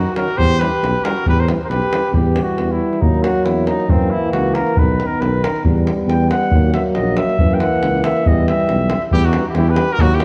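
Balkan brass band music, restless and fiery, moves at 137 BPM in 2/4 with a lightly swung sixteenth feel in E Hungarian minor, heard as a short section cut from a longer piece. A clear, up-front trumpet carries the melody at the opening and returns at 9.1 seconds, while a warm flugelhorn with vibrato plays a second line throughout and takes a solo from 2.1 to 9.1 seconds. Underneath, a mellow tuba holds the bass, a tight, vintage-sounding davul drives the percussion, and a euphonium and a background trombone, both with light vibrato, fill out the accompaniment. The horns have a classical-style poise, and the trumpet, flugelhorn and trombone sit at a roomy distance. The harmony circles through Em, D#m, F#7 and B on a moderately reverberant scoring stage, giving the production a dark, rounded glow.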